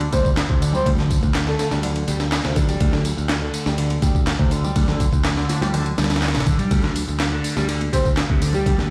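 Played back through a big sound system in a bare, stone-walled room with vinyl crackle over the top, this short, energetic breakbeat cut at 123 BPM has a gritty edge throughout. A compressed, pitched-up sampled kit with a thumpy kick and high-tuned snare sits up front beside a punchy picked electric bass with tube saturation, while a tape-warm analog drum machine adds handclaps, hi-hat and tambourine, and faint, distant congas struck with hard hands ride underneath. A screaming, guitar-like overdriven synth riff with phaser, lush chorus and delay runs almost the whole way, and a breathy, flute-like lead with vibrato and a small-speaker tone appears only from 0.1 to 1.7 seconds and again at 7.9 seconds.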